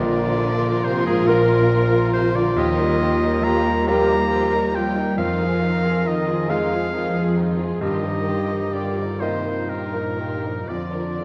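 A clear, lightly vibrato oboe sings alongside a warm clarinet and a bright concert grand piano with deep bass in this hopeful, moving cinematic film-score excerpt in Eb major, unfolding in a rubato 6/8 at about 40-47 BPM, while veiled, con sordino string sections (violins carrying the melody and a second line, violas, cellos and double basses) add a dark, muted cushion beneath, all bathed in a wet scoring-stage reverb.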